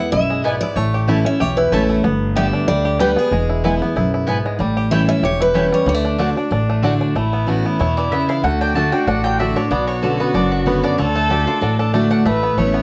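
Heard through worn, warbly cassette tape in a moderate studio room, this lively, rustic bluegrass excerpt in D major swings lightly at 188 BPM as a full-bodied picked steel-string guitar carries the melody with audible finger squeak until 6.8 seconds over a second up-front, fresh-stringed guitar's accompaniment, twangy fingerpicked banjo arpeggios, thumpy gut-string upright bass and double-strung mandolin stabs, before the mandolin takes a woody solo from 7.2 seconds while a dark, close fiddle adds a bowed second line with light vibrato and portamento.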